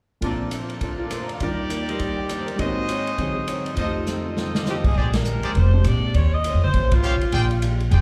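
Big band swing with a brassy, energetic drive, this short live club excerpt sets bright, tight trumpet stabs, a dark hollow-body archtop guitar in the background, an intimate baby grand piano with audible action noise that drops out at 6.1 seconds, and a polished drum kit with a punchy kick and a fill at 4.1 seconds, before a clear saxophone section carries the melody with vibrato from 4.7 seconds and a woody, growly upright bass enters up front at 5.0 seconds, with slapback echo on the guitar, piano, trumpets and saxophones.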